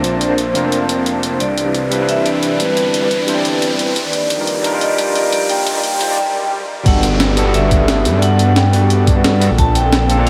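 Liquid drum and bass at 176 BPM in G major, lush and uplifting, with a gently swung groove and a dreamy, reverb-soaked sound: a ringing, metallic vibraphone carries the melody through lo-fi sampler grit, delay and a low-pass filter, while a lightly overdriven tine electric piano sits up front and an airy, breathy pad with chorus holds sustained chords in the background. A menacing, detuned saw bass evolves underneath, and a gritty breakbeat kit with a high-tuned snare and hi-hat drives the piece as electronic risers, swells and filter sweeps build from Bbmaj9 through Cmaj9 and Ebmaj9 to a short break at 6.2 seconds. The drop lands on Gmaj9 at 6.9 seconds, where a thumpy, compressed electronic kick enters, in this fragment cut from a longer piece.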